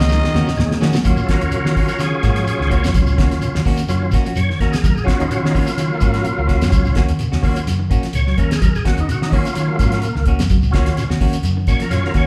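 Hypnotic and intense, this afrobeat excerpt in Eb dorian at 127 BPM opens on an Ebm7 with a growling, raspy trumpet, a background of brilliant trombones and a very quiet bowed viola, plus soft-handed congas, all gone by 0.9 s, while the damped 70s kit, up front with a fat snare and tight kick, plays a fill before an overdriven, gritty tonewheel organ with key click, chorus vibrato and fast rotary speaker takes a solo from 1.0 s over a round, foam-muted fingered bass, a grainy shekere, clean semi-hollow guitar arpeggios and dark fingered guitar stabs, all in a moderate large studio reverb.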